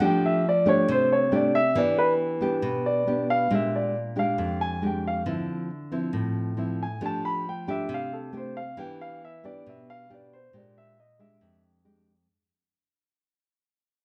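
A straight 4/4 bossa nova feel at 137 BPM carries this breezy, sophisticated fragment, where a natural, up-front baby grand piano plays a solo melody over warm, up-front, thumb-plucked classical nylon-string guitar moving through F69, Em7, Bb6 and Dm9, the band playing live together in a large studio with moderate reverb and tuned to A4 = 438 Hz, as a long fade-out starts at 1.1 seconds.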